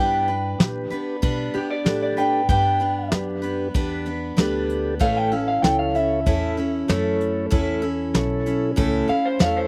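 A twangy, bright electric guitar with slapback echo opens this heartfelt, sunny honky-tonk and classic country clip at 95 BPM in G major, carrying a clean, slightly broken-up solo over a full-bodied picked steel-string acoustic guitar and a woody pizzicato upright bass. At 0.6 seconds, a mellow, flute-like tonewheel organ with key click and a slow rotary speaker joins, along with a dark, smooth brush drum kit that has a fat snare and punchy kick. The harmony moves from G to A at 5.0 seconds in a dry sound with little reverb, the lead guitar, acoustic guitar and drums all sitting up front.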